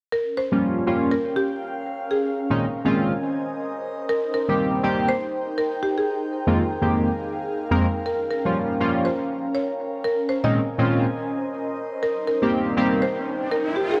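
Late-night and hypnotic, this short house excerpt cut from a longer piece rides a swung 16th-note groove over a looping progression of half-diminished, minor seventh and eleventh chords. Up front, a glossy, retro chorused polysynth stabs from 0.5 s with sawtooth and pulse-width tones, a sub octave and filter sweeps, softened by cassette tape character and tape echo, while a woody, buzzing marimba carries the melody through dub echo and an airy, breathy pad with a moving notch adds detuned, chorused texture beneath. An electronic riser enters at 13.2 s, and an echo chamber reverb gives the whole a moderate sense of space.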